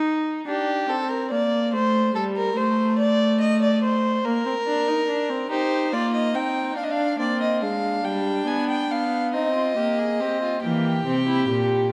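In a straight 6/8, this contemplative yet driving baroque-style fugue for string quartet, cut from a longer piece, opens with a solo viola's gut-string accompaniment in period style with light vibrato, soon joined by a reedy violin second line, then a rich violin melody at 5.5 seconds, and finally a close, up-front cello bass at 10.6 seconds, every part bowed and set in a wet scoring-stage reverb within a dark, warm production.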